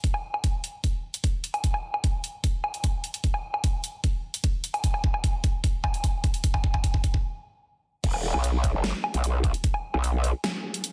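Heavy wobble dubstep at 150 BPM in an aggressive, menacing half-time feel, this short cut from a longer piece builds on a tape-warm, up-front knocking electronic kick and a layered kit of huge snare, bright high-passed hats, crash cymbal and woodblock, running a drum fill from 1.6 seconds into a stop at 7.2 seconds before the drop at 8.0 seconds unleashes a growling, saturated, formant-filtered wobble bass between E1 and B1 with chorus and overdrive, set in a dense, heavily limited master with light reverb.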